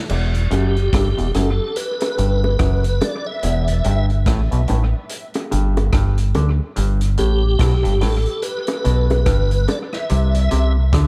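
Over a swung 72 BPM roots reggae groove in E minor, a round, up-front fingered bass anchors a hypnotic, meditative excerpt as a small-room vintage kit with dark cymbals, punchy kick and rim click trails dub echo, a stringy, mellow clav riff shimmers through a phaser, tight high-tuned bongos patter softly from 0.5 seconds, and a piping, lightly overdriven tonewheel organ melody with key click, chorus vibrato, slow rotary speaker and echo floats above as the chords move from Em to G to C in a dry, echo-heavy mix.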